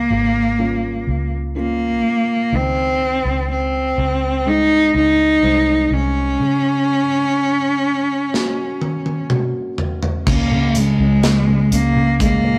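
Tender and hopeful, this slow pop ballad excerpt at 62 BPM in Db major is led by a rich, bowed solo cello with focused vibrato, up front over a soft, thick-felted upright piano and a dark, round, foam-muted electric bass, all caught in a rough rehearsal-room recording with light reverb and warm saturation. The harmony moves from Db6 through Ab/Db and Gb/Db, and a break begins at 6.4 seconds. At 8.3 seconds an up-front acoustic drum kit with a punchy kick and a rolled-off top enters with a fill that carries the piece into a new section on Db5 at 10.3 seconds.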